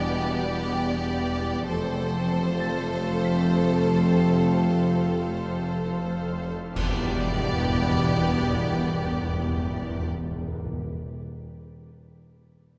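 A tense, ominous suspense cue at 94 BPM in E phrygian opens on a full orchestral bed, cut from a longer piece. Clear, intense violins carry a distant melody over a second violin line, while lush violas and cellos, deep double basses and mellow French horns and trombones in the background hold sustained Em7 and F chords. A very quiet bright piano adds a brilliant, worn texture high above until 6.8 seconds, joined moments after the opening by a shimmering, ethereal pad and a string-like sawtooth drone with a detuned noise layer. A cymbal swell with dark cymbals, clash cymbals and concert bass drum enters at 4.2 seconds, and close, round timpani on E join with a band accent at 6.8 seconds as the harmony returns to Em7. A wet scoring stage reverb surrounds the orchestra.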